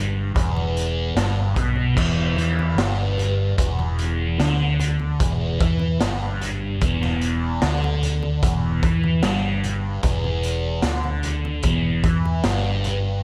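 Hypnotic and trippy, this short psychedelic rock excerpt moves at a slow 74 BPM in straight 4/4, built around a thick, dark fuzz guitar riff sitting on an E5 chord, double-tracked and up front with distortion and a phaser. Beneath it, a vintage muted fingered electric bass adds a round, punchy, foam-muted low end, while a raw garage drum kit enters at 0.4 seconds with a gritty, saturated small-room sound, dark cymbals, a punchy kick and a drum fill from 1.4 to 2.0 seconds. Very quiet, bright, low-tuned congas join at 0.6 seconds, and light reverb softens the mix.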